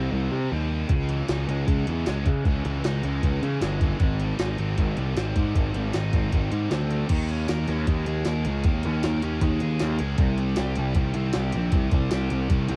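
This indie rock excerpt opens on a bright, double-tracked high-gain guitar riff over a dark, round fuzz bass that sits up front, the pair sounding a C minor chord before moving to D-flat minor with an added ninth at 0.9 seconds. At that same moment a jungle sampler-style drum kit arrives, pitched up and compressed, with a thumpy kick, a high-tuned snare, hi-hat, tambourine and crash, all carrying the gritty, tape-warmed colour of a cassette. At a straight 155 BPM in 4/4, the mood is jangly yet wistful, with the harmony shifting to A-flat major seventh and then to an E-flat seventh suspended-fourth chord as a new section begins. Just before that change, at 6.9 seconds, the kick and snare drop out, leaving the remaining drum parts to ride alongside the riff and bass. The harmony returns to C minor near the close, and the sound is dry and close, like a home cassette recording, with the overdriven bass sitting more prominently than the distorted guitar.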